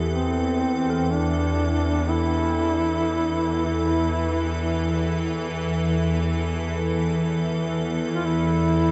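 A tense, string-like bowed drone sits up front in the low register from the start, joined by an icy, crystalline glass pad with chorus and a very quiet, eerie FM synth bell tracing detuned, inharmonic arpeggios. At 0.1 seconds a mellow, folk-style solo duduk enters with vibrato, its melody trailing into a diffuse ambient delay. This desolate, unsettling dark ambient drone excerpt floats in free time over an E minor add11 chord, tuned to A4 = 438 Hz and bathed in a huge ambient reverb within a dark, warm production.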